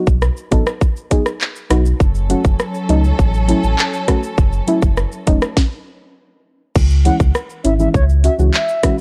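A dry, gritty cassette-tape sound frames this hypnotic, bouncy dancehall excerpt, where tight electronic drums with a sharp snare, metallic hats and handclaps sit up front beside a full sine sub bass and mellow, nasal chorused chord stabs, lush bowed strings pump in from 2.0 seconds, a stop breaks the groove at 5.6 seconds, and a bright, reedy baroque flute with tape echo carries a distant melody from 7.1 seconds.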